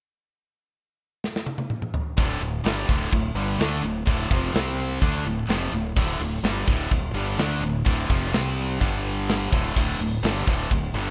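Heavy metal in D minor at 126 BPM, aggressive and dark, opens with a drum fill on a tight, polished kit with bright cymbals at 1.2 seconds before two bright, picked distorted guitars (one high-gain and up front, the other tucked in the background) drive a riff over a punchy, overdriven fingered bass from 2.2 seconds through Dm, C5, G5 and D5, all in a dry, rough home demo mix cut from a longer piece.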